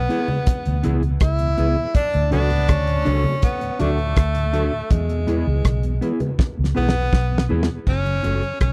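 Roots reggae at 81 BPM in 4/4, serious and laid-back, built on a round, foam-muted bass and a dry 70s drum kit with a fat snare and tight kick, both up front, while very quiet low-tuned congas sit distant in a large room. A breathy, whispered tenor saxophone carries the melody with dub echo, joined by a second saxophone line with scooped notes from 1.9 to 3.9 seconds, over a dark, clean fingered electric guitar also treated with dub echo and a very quiet organ turning through a slow rotary speaker. The close, dry 1970s-style studio sound frames a drum fill from 6.4 to 7.9 seconds as the chords move from E through D back to E and on to F#m.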